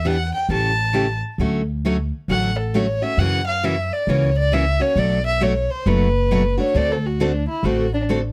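Closely miked and nearly dry, this short, charming cut of acoustic string swing sets a dark, woody bowed violin with vibrato and sul tasto shading, soloing from 1.4 seconds, over warm picked steel-string acoustic guitar accompaniment and a growly, thumpy pizzicato upright bass, all three up front in a playful swung feel that moves through Dmaj7, F#7, Bm7 and D7.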